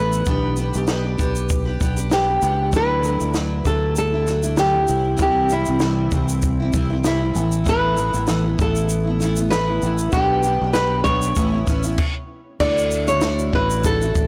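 Carefree and sunny, this acoustic pop excerpt moves with a light 16th-note swing in 4/4. An up-front, fingerpicked nylon-string guitar carries the classical-toned melody, touched by tape echo, while a double-tracked, full-bodied jumbo steel-string guitar supplies picked accompaniment underneath. A punchy fingered electric bass sits close and direct, and a compact cocktail drum kit in a tight booth adds a punchy kick, a high-tuned snare, shaker and dark cymbals, coming in at 0.1 seconds. Chords such as G/B, Dadd9, C and Asus2 pass under the tune before everything halts for a brief stop at 12.0 seconds, then a new section opens on Dadd9 at 12.6 seconds. The recording has a light reverb and small-room ambience, but its blown-out, overdriven sound gives the gentle arrangement a gritty, saturated edge.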